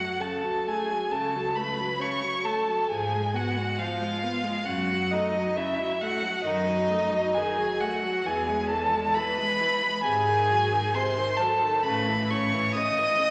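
Serene and warm, this slow romantic string quartet excerpt moves at 67 BPM with a rubato feel in 4/4 and opens on F#m, where an up-front first violin sings the expressive melody with vibrato and portamento, a close second violin traces a soft-attacked line beneath it, a clear, focused viola supplies bowed accompaniment, and a rich, smooth-topped cello carries the bass until 12.6 seconds, all bathed in a concert hall's reverberant glow.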